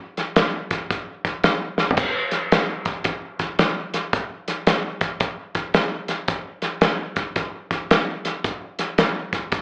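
A warm soul drum kit sets off at 0.2 s on a gritty, soulful blues groove at 111 BPM in a swung 4/4, its dark cymbals, hi-hat, medium-tuned snare, punchy kick and toms sitting up front with a rolled-off top, breaking into a fill at 1.7 s, all heard as a live gig through the venue's PA with club ambience, a wet club reverb and an AM-radio tint in this short cut from a longer piece.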